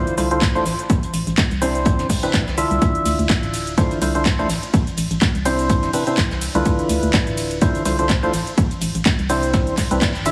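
A heavily compressed, radio-style sound with small room ambience and a lush hall reverb frames this bittersweet, energetic piano house clip in D dorian, cut from a longer piece and running at 125 BPM with a swung 16th-note feel over a cycling Dm9, Am and Cmaj9 progression. Up front, a hollow, mellow organ stab plays the riff with subtle chorus, digital delay and sidechain pumping, while a dark, organ-like FM bass pumps underneath. At 0.1 s an overdriven house kit of handclaps, metallic hi-hats, ride and shaker comes in, with a very quiet, muffled lo-fi brush kit adding hi-hat and snare, and a punchy, overdriven electronic kick follows at 0.4 s, before the band hits an accent at 10.0 s.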